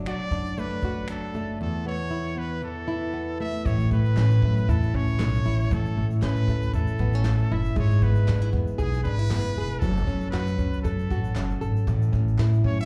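Sunny and easy-going, this acoustic pop excerpt from a longer piece swings lightly in 4/4 as an up-front, fingerpicked nylon-string guitar with slapback echo and a woody, thumpy pizzicato upright bass carry the harmony, a brilliant trumpet sings a vibrato-laced pop melody through slapback and tape echo, a vintage brush kit with tight kick, medium-tuned snare, shaker and finger snaps pumps in a small room, and crisp, band-limited group handclaps join in the background at 4.2 seconds, all heard live through a club PA.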